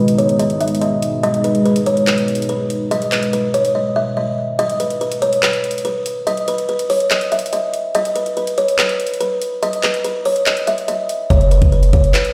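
A half-time trap groove at 143 BPM in 4/4 anchors this hard-hitting, menacing hip hop passage in G# minor, cut from a longer piece, with an up-front electronic drum kit of knocking kick, metallic hi-hats and handclaps. A buzzing kalimba carries the melody throughout, its woody, hollow-box pluck ringing through a low-pass filter and delay. Underneath it, a deep, moody ambient pad holds a G#m chord with a detuned sawtooth body, sub-octave weight, chorus and its own reverb, while a filter sweep runs across this opening stretch, which closes on a short break. Once the pad drops out at 4.6 seconds the harmony falls away, and the kick is muted for a spell, leaving the kalimba, hats and claps exposed. At 11.3 seconds the kick returns and a long, mellow sine 808 bass lands on F#1 with a fast attack, sitting loudest in the mix as it decays. The whole track sounds as if played over a big sound system in a bare stone room, with a moderate scoring-stage reverb around it.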